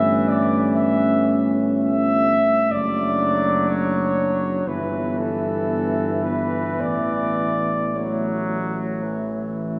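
A wet church reverb and a hint of small-room ambience surround this brief, tender classical hymn for brass band, moving unhurriedly at 52-63 BPM in 4/4 with a gently rubato feel. Up front, a mellow, punchy flugelhorn carries the serene melody while a French horn section with light vibrato sings a second line in the background, and a brilliant, distant trombone and a dark, smooth-topped euphonium fill in the accompaniment. A close-miked tuba anchors the bass as the harmony passes from A7/G through D/F# and Em/G, settling on A at 6.8 seconds.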